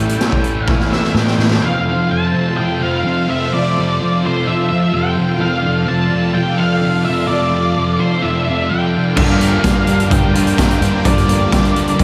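This shoegaze and dream pop excerpt from a longer rock piece moves at 127 BPM in a straight 4/4, drifting through F major with a hazy, dreamy mood. A thick, dark fuzz guitar riff sits up front throughout, while an octave-fuzz lead carries the melody above it, its distortion trailing into tape echo. Beneath, an airy, detuned sawtooth pad with a slow attack and long release holds sustained chords, shimmering with chorus and a resonant filter. A gritty garage drum kit, with a boomy kick and saturated, rolled-off top, joins a round, foam-muted bass and a clean, twangy guitar cloaked in reverse reverb, all three dropping out at 1.6 seconds after a short drum fill. They return at 9.2 seconds, when the chords shift from F to Gm7 and a very quiet, double-tracked, overdriven stack guitar adds its riff, and the whole mix is soaked in lush hall reverb.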